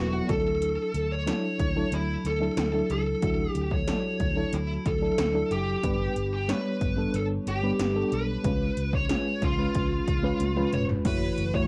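1980s-style pop at 92 BPM with a glossy, nostalgic mood, where a dark, high-gain lead guitar sits up front over a mellow FM electric piano with chorus and tremolo, a round, foam-muted fingered bass and punchy electronic pad drums with gated reverb on snare and toms, moving through Dadd9, G and C#7 before a drum fill at 10.4 seconds and a shimmering pulse-width pad entering on F#m7 at 11.1 seconds, all captured as a home cassette recording with moderate booth ambience.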